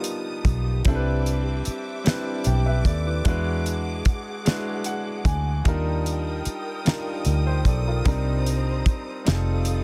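A clear, slightly boxy baby grand piano, a lush bowed string section with vibrato and a soft attack, and a dry, damped 70s drum kit with a fat snare and tight kick open this slow, sultry six-eight R&B excerpt at 50 BPM, with a dark, round, foam-muted electric bass joining at 0.5 seconds. The piano comps through yearning extended harmony that moves from G7alt to Cmaj9, E9, Ebmaj7, Cm7 and F7, and it steps forward with a brief fill between 4.5 and 5.7 seconds. Drums, bass and piano sit up front in a small room, while the close, expressive strings hold sustained chords in a dense, heavily limited modern master.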